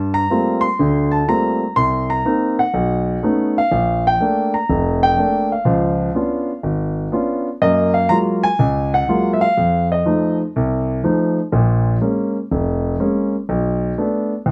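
A solo concert grand piano opens this short excerpt of sophisticated, swinging jazz at 123 BPM in 4/4, its tone natural and up front with a deep bass reaching down to F1. Rich extended chords such as Gm11, B9 and Db7b9 pass by before the harmony settles into F# major at 7.6 s on an F#maj9, moving on through F7 and A#m7 to close on Bm7. Light reverb frames the piano, and the tuning sits slightly low at A4 = 436 Hz.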